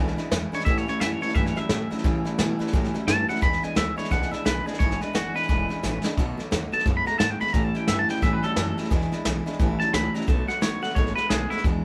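Rowdy and rollicking, this short rockabilly excerpt moves at 175 BPM in 4/4 with a swing on the eighth notes, sitting in E mixolydian. A vintage brush drum kit sits up front with a tight kick, a medium-tuned snare and hi-hat, its sound soft at the top, and it plays a fill from 5.8 to 6.2 seconds. Underneath, a pizzicato upright bass with gut strings gives a woody, thumpy low end, while a full-bodied dreadnought steel-string acoustic guitar plays a bright, picked accompaniment. Further back, an electric guitar through a small old amp plays a slightly broken-up, lo-fi riff in its lower register. Out front from 0.5 seconds, a clean, twangy electric guitar carries the melody, shimmering with harmonic tremolo over a dominant-seventh progression on E7, A7 and B7. The band sounds like it is playing live together in a small room with a moderate touch of ambience.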